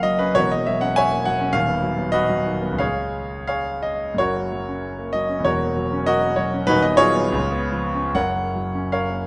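In a flexible 2/4 with generous rubato, the pulse drifts between 70 and 106 BPM, giving this romantic character piece for solo piano a lyrical, passionate sway. Set in F# major and tuned to A4 = 439 Hz, the concert grand covers a span from D#1 up to G#5, its deep bass anchoring a clear, natural tone that sits up front in the listener's ear. The harmony moves twice through the same progression, F#7/E to B/D# to C# and home to F# at 4.2 seconds, then again with a C#7 before resolving on F# at 8.2 seconds. A moderate recital hall reverb lends the instrument a sense of space, while the top end stays gently rounded. Lasting just 9.3 seconds, this passage is cut from a longer work.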